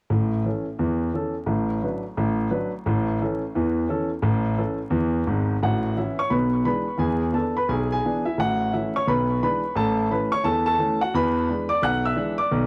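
A gritty, crackling vinyl-style recording in a small room gives this brief stretch of exuberant, playful stride piano jazz its vintage character, with a swung 174 BPM pulse in 4/4 and A major. A lone grand piano, smooth and up front with short sustain and a touch of tape echo, spans from G#1 to F#6, moving from A through Bm7/A before a second section from 5.6 seconds leans on E7 and returns to A. The piece is cut from a longer performance and ends at 12.7 seconds.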